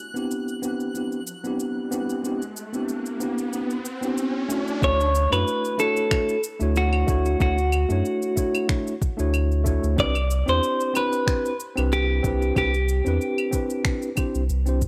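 Smooth and relaxed, this sunset chillout cut opens with a worn, slightly out-of-tune tine electric piano through analog delay, a sparkling granular texture shimmering in the background, an electronic riser building from 1.3 seconds, and tape-warm electronic cabasa, claves and finger snaps in a small room. At 4.8 seconds a round sine sub bass with tube saturation and a soft electronic kick arrive as a bright, twangy clean electric guitar takes the melody, bathed in spring reverb and analog delay. The recording has a dry, gritty hardware character with digital ambience, and the chords move from Cmaj9 to Dmaj7 and back.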